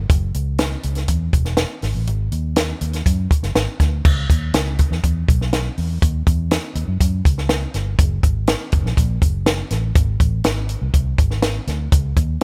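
Uptempo 1960s-style soul in C# minor at 122 BPM, this passionate, urgent excerpt pairs a punchy, foam-muted vintage fingered electric bass ranging from E1 to F#2 with an up-front compact cocktail drum kit of crash, hi-hat, tight kick and high-tuned snare with dark cymbals, all in a dry sound with little reverb that shifts into a new section at 4.0 seconds.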